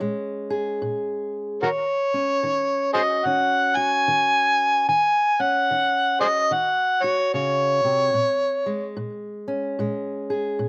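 A swung 4/4 at 74 BPM sets a slow, smoky groove for this short acoustic country blues excerpt, as a dark, woody fingerpicked steel-string guitar with old strings moves from Bbm7 to Ebm7 and back to Bbm7 at 8.1 seconds. Up front, an amplified, overdriven harmonica enters at 1.6 seconds and carries a soulful, jazz-leaning solo until 8.9 seconds, its gritty tone marked by vibrato, tongue slaps, scooped notes and a slapback echo. The sound is dry and open, recorded outdoors with little reverb.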